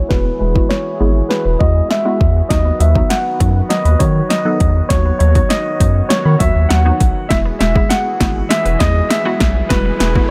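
Dance-pop at 100 BPM in E major, this summery, euphoric clip is cut from a longer piece and plays as a build-up, with a drum fill and a filter sweep running through its full length. A clear, intimate grand piano carries the melody, its action noise audible beneath a low-pass filter and tape echo. The overdriven deep house kit sits up front with a deep kick, punchy snare and metallic hats, while a round, dark analog bass pumps against it. Behind them, a smooth, airy supersaw holds sustained chords, a hollow, bouncy square pluck with chorus fills in the accompaniment, and a very quiet, woody mallet-like pluck spins arpeggios. The harmony moves from Eadd9 to B/D# and back to Eadd9 at 7.3 seconds, and a faint electronic riser enters at 8.5 seconds, all set in a digital ambience.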